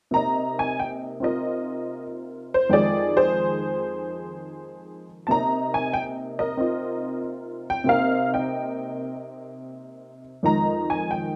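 A wet studio reverb surrounds a detuned, jangly honky-tonk upright piano that sits up front, its woody vintage tone tuned slightly below standard pitch. In this moody, late-night solo jazz fragment cut from a longer piece, the piano plays alone in a swung 4/4 from 0.1 to 11.4 seconds. It moves between Cm7 and Fm9 across a range from F2 to Bb5.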